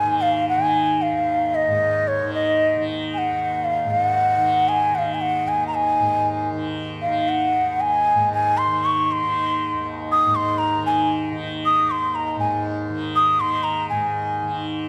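A breathy bamboo bansuri and a softly plucked tanpura begin together in this short excerpt of Hindustani classical music, set in raga Bageshri on Eb at around 116 BPM in 4/4 and gradually speeding up. The bansuri sits up front with a crisp attack and vibrato, carrying a longing melody, while the bright, buzzing tanpura drone shimmers quietly beneath it. A moderate recital-hall reverb gives the meditative performance a sense of space.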